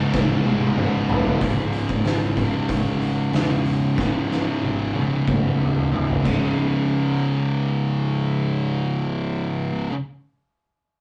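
An oversized, low-tuned drum kit sits up front in this sludgy, ominous stoner and doom metal passage at 93 BPM in 4/4, its punchy kick, fat snare, toms, hi-hat and dark cymbals sounding saturated and gritty in a bright stone room, with fills driving the opening and again from 4.0 to 6.6 seconds. A pair of thick fuzz guitars grinds through the riff on C#, one prominent and the other set further back, both dark and distorted, shifting from a C#5 power chord to C# minor and back. A scooped, high-gain guitar, double-tracked and bright, adds its bite in the background only during the first 1.4 seconds. Underneath, a fuzzed, overdriven electric bass picks a growly low line. The rough rehearsal-room recording carries tube saturation and a moderate studio ambience, with a dull top end that keeps the whole heavy mass murky, and the drums drop out at 6.4 seconds while the guitars and bass carry on in this clip cut from a longer piece.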